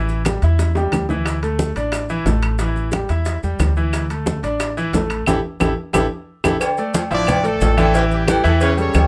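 Opening with a bright, up-front concert grand piano and a thumpy pizzicato upright bass, joined at once by hard-handed congas, ringing timbales and agogo bells, tight high-tuned bongos and cowbell, grainy maracas and woody claves, this driving, fiery salsa in D harmonic minor races along at 180 BPM through drum fills and a band accent before a smooth baritone saxophone enters at 6.6 seconds and a punchy, brilliant horn section with slapback echo takes the melody at 7.1 seconds.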